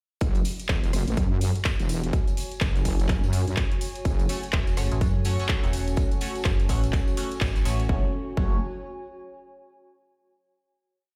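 A swaggering, bouncy bass house track in F# minor at 125 BPM, with a 60% swing on the sixteenths, opens at 0.2 s straight into the drop. A punchy, overdriven four-on-the-floor kick sits up front beside a heavy, detuned wobble bass whose modulated phrases change their wobble speed and pump with sidechain. Programmed closed and open hats, claps and rim clicks fill out the groove, while a jingly hand-played tambourine runs sixteenths in the background and a warbling, lo-fi tape-like pad drifts in with slowly shifting chords. Midway the wobble bass gives way to a metallic FM bass with chopped, decaying phrases, joined by a nasal, band-passed chord stab playing syncopated parallel shapes through phaser and delay, and by a deep, moody analog pad holding dark sustained chords. After a band accent, the drum kit and tambourine stop at 7.9 s as the wobble bass briefly returns, and the tape-like pad carries the final chord out to 9.8 s. 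The mix itself is dry, but the playback in a bare stone room lends it a hard, reflective ambience.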